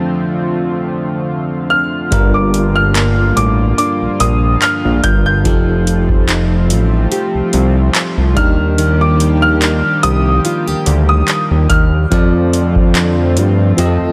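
A clear, worn grand piano sings a high melody through tape echo over a bell-like electric piano tucked in the background and a shimmering, chorused pulse-width pad that pumps to the sidechain. At 2.1 seconds a fingerpicked nylon-string guitar adds echoing arpeggios in the background, while a fat, detuned sawtooth bass and a booming, dry analog drum machine with a deep kick, metallic hats and handclaps arrive up front, all set in light reverb for a sensual, late-night contemporary R&B feel.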